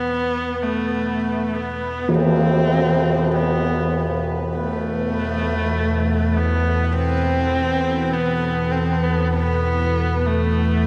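A short, ominous dark ambient drone cut from a longer piece opens at once with a bright, husky horsehead fiddle up front, bowed with vibrato and portamento through tape echo, above a mellow, evolving analog drone thick with lush chorus and a filter sweep. Behind them, a detuned, resonant pad fades in with sustained chords, while a bubbling texture of random filter steps glimmers through its own built-in reverb. A single dark tam-tam strike lands at 2.1 seconds, and the whole passage sits in a wet cathedral reverb with a dark production.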